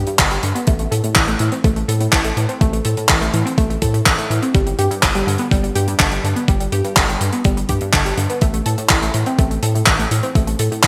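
Italo disco at 124 BPM in A minor, this bittersweet, melodramatic excerpt sets a nasal sawtooth analog pluck playing arpeggios, colored by chorus, phaser and delay, over a round, deep analog bass built from triangle and sine tones. A dry, up-front 70s drum kit adds handclaps and hi-hat with gated reverb, while a thumpy, overdriven electronic kick drum sits in a small room. The bright 1980s-style digital production places it all in a lush hall reverb as the harmony moves between G5 and A5 power chords.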